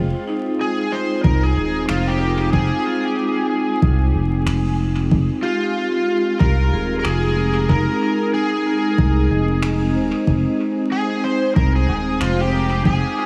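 A swung 93 BPM groove in 4/4 anchors this hazy, meditative ambient dub in F minor, where a round, up-front sub bass and a deep, tape-tinged electronic kick from 1.2 s sit beneath a warbling, detuned, nostalgic pad holding sustained Fm chords, bright ringing vibraphone arpeggios trailed by analog delay, an overdriven slide guitar melody entering at 0.6 s with chorus and delay, and faint gritty finger snaps thrown into dub echo, all steeped in a huge dreamy reverb and vinyl crackle in this brief cut from a longer piece.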